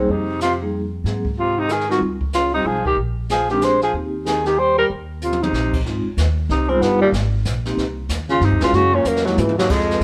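A swinging 3/4 pulse at 187 BPM drives this playful small-group jazz excerpt in Eb major, shifting to Ab major at 5.9 s, as brushes on a distant, roomy kit with dark cymbals and a boomy kick add fills around 5.2 s and 9.1 s. Up front, a breathy tenor saxophone carries the melody with a whispered subtone, soft attack and scooped notes, while a mellow, vibrato-laden baritone saxophone plays a second line further back in the room. Pizzicato upright bass gives a woody, thumpy bottom, and an airy vibraphone with fast motor vibrato rings out metallic accompaniment until 9.4 s, all under light reverb.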